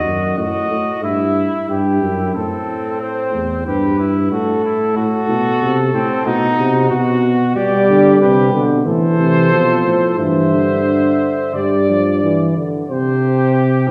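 A warm bass trombone stands up front at the bottom of this solemn, serious brass canzona, anchoring the low register from the first moment to the last, its tone as distant and roomy as the upper voices. Above it, a mellow cornet carries the melody with a soft attack and light vibrato, and a trumpet adds a second line in imitative classical style, its tone touched by the same gentle vibrato. A mellow trombone joins as accompaniment at 7.6 seconds and drops out at 12.9 seconds, its smooth top giving the middle of the texture a close, rounded presence. The harmony moves through diminished and minor chords before settling onto suspended and open fifth sonorities near the close. A generous recital-hall reverb, typical of a church or concert hall, surrounds the ensemble, and the passage is cut from a longer piece in a steady, straight four.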